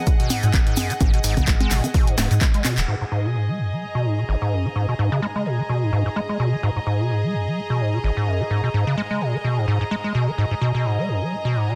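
A squelchy, resonant square-wave acid bass riff, overdriven and pumping with digital delay, drives this trippy acid house excerpt in G# minor at 128 BPM, where a punchy kick, a tape-warm drum machine with congas, handclaps, hi-hat and snare, a grainy tube shaker and a round sine sub bass push along over a G#m7 drop before a drum fill at 2.6 seconds and a band accent, then fall away by 2.9 seconds, leaving the bass under a filter sweep and floating, bowed sul tasto strings in a dense, heavily limited mix.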